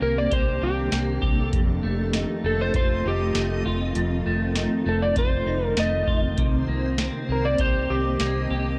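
A clean, twangy electric guitar picks arpeggios through chorus, delay and shimmer reverb, over a blurred, warbling granular cloud pad in the background and a round, foam-muted fingered bass, opening this haunting, ethereal dream pop fragment at 99 BPM on Cm7 before shifting to F7 at 1.5 seconds. A slightly broken-up electric slide guitar sings the melody through delay and shimmer reverb, while a booming analog drum machine enters at 0.3 seconds, sitting up front with a deep kick, crisp snare and metallic hats. The harmony returns to Cm7 at 6.4 seconds within a dark production and a modest booth ambience.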